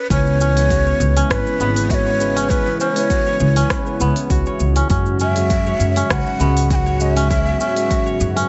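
A breathy, end-blown ney with expressive vibrato leads up front through digital delay in this meditative, earthy organic downtempo excerpt at 100 BPM in C# minor pentatonic. Crisp, ringing fingerpicked kora arpeggios join it, while a clean tine electric piano and a detuned sawtooth analog pad with chorus sit in the background, the piano and pad both pumping. A woody pizzicato upright bass with tube saturation, a deep house kit of smooth hi-hats, rim click and shaker, and a deep layered electronic kick complete the arrangement, all in a light small-room ambience as the harmony moves from C#m7 to F#sus2 at 4.9 seconds.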